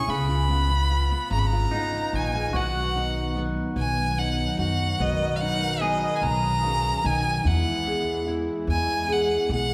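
Bathed in a wet recital-hall reverb, this short excerpt of a tender, hopeful acoustic folk-pop ballad sways in a slow 6/8 at 49 BPM, with a clear, focused bowed violin singing the melody up front over fingerpicked steel-string acoustic guitar with fresh strings and a hint of finger squeak, woody pizzicato upright bass, and twangy, slightly broken-up electric guitar arpeggios through a small old amp with tremolo, until a brassy, airy analog pad with chorus enters at 2.5 s to hold sustained chords as the harmony moves from C#7 to B and then to E at 7.5 s.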